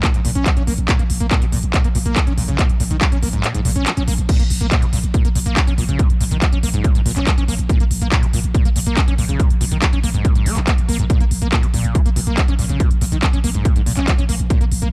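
Driving peak-time techno at 141 BPM in Bb minor, industrial and hypnotic, this cut from a longer piece rides a heavy, overdriven electronic kick up front, a layered techno kit of crash cymbal, handclaps and smooth hats with the hats and cymbals pumping under sidechain, a growling, buzzy 808-style bass anchored on Bb1 through tube saturation and a low-pass filter, and a squelchy, resonant acid riff on sawtooth with filter sweeps, distortion, chorus and dub echo, all in a dry sound, with the kick dropping out from 3.4 to 4.3 seconds before the groove slams back in.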